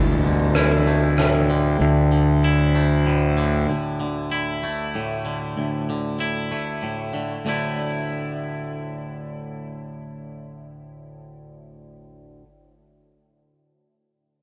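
Brooding yet cathartic, this post-rock passage from a longer piece moves at 96 BPM in 3/4, with a clean, twangy, scooped electric guitar up front picking arpeggios over a Dsus2 chord through tape echo for the whole 12.5 seconds. A growly, bright fuzz bass with overdrive plays a low D until 3.7 s, while a gritty, saturated rim click sounds in a big, pumping room from 0.6 to 1.3 s. The studio reverb is light, the top end stays dark, and a faint mains hum sits underneath.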